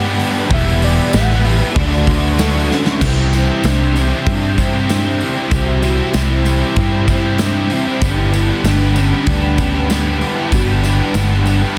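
Shoegaze and dream pop rock at 96 BPM in a straight 4/4, this wistful, dreamy excerpt is cut from a longer piece and moves through Gmaj7, Em and Dmaj7 before settling on C and returning to Gmaj7. A velvety, detuned synth lead carries the melody with chorus, digital delay and vibrato, floating over a lush, thick pad of sustained sawtooth chords treated with chorus. Three overdriven electric guitars play riffs in the background: a dark one with ensemble chorus and compression, a warm one with reverse reverb, and a dark, double-tracked third. Up front, a vintage foam-muted fingered bass sounds round and punchy, while a big-room acoustic drum kit with a punchy kick and medium-tuned snare enters at 0.2 seconds and marks the shift into the second section with a fill ending at 3.0 seconds. A jingly tambourine joins quietly at 1.1 seconds, and the whole mix arrives as a dense, heavily limited modern master.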